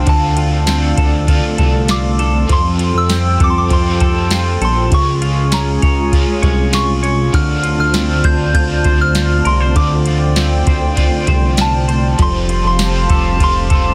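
A soft vintage rhythm box with a deep kick, crisp snare, ride cymbal and tambourine sets a straight 99 BPM pulse under this floating, blissful dream pop excerpt, where a fat, detuned analog bass with ring modulation and a filter sweep anchors a Dm7, Fadd9 and Db progression, a clean semi-hollow electric guitar plays chorused, delayed arpeggios, an overdriven, double-tracked electric guitar adds accompaniment through harmonic tremolo, an airy, flute-like hollow pad holds slow-attack chords, and a pure FM synth bell carries the melody high above, with shimmer reverb haloing the bell, guitars and pad in a dense, heavily limited modern master.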